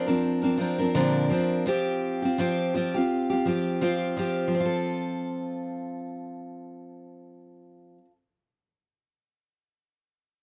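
Moving at 84 BPM in 4/4 with a gentle swing on the sixteenths, this short pop excerpt in F major has a heartfelt, carefree mood. A picked steel-string acoustic guitar carries the accompaniment alone from 0.0 to 8.2 seconds, sitting up front with an auditorium-like body, moving through Bbadd9 and Fsus2 before settling on F at 4.5 seconds. Light reverb and a dark production give the sound a cozy, intimate glow.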